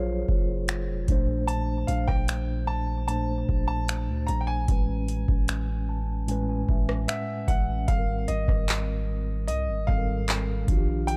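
A straight 75 BPM groove from a booming, overdriven analog drum machine (deep kick, metallic hi-hat, finger snaps, handclaps and rim click) enters at 0.3 s and carries this dreamy, smooth contemporary R&B excerpt, where a long, sine-toned 808-style bass sits up front beneath a mellow tine electric piano, which adds a fill from 5.5 to 7.9 s, and a clear, intimate baby grand piano melody with audible action noise and digital delay, all moving through major-ninth chords in a dark production with little reverb.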